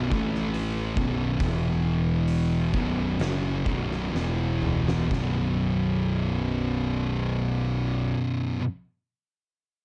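A shadowy, distorted fuzz guitar riff leads this heavy, ominous stoner and doom metal fragment at 60-71 BPM, joined by a second, warmer fuzz guitar in the background and a warm, overdriven picked bass up front over A5, B5 and E5 chords, while an oversized low-tuned drum kit with a fat snare, boomy kick and rolled-off top in a bright stone room slows down, plays a fill from 4.1 seconds and stops at 5.3 seconds, set in light reverb within a dark production.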